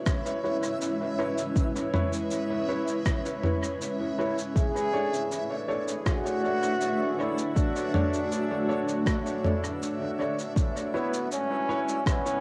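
Ambient dub in a hazy, spacious mood, cut from a longer piece, where a blurred, cloudy granular pad holds sustained chords beneath a reversed, swelling texture, a deep overdriven electronic kick sitting up front, and a muffled, sampler-style kit of rim click, shaker and toms. Woody upright piano stabs carry 12-bit grit and dub echo, while a bright trombone with light vibrato enters at 4.6 seconds to take the melody, sounding distant and roomy yet forward in the mix. The whole has the softened character of a home cassette recording with light digital ambience.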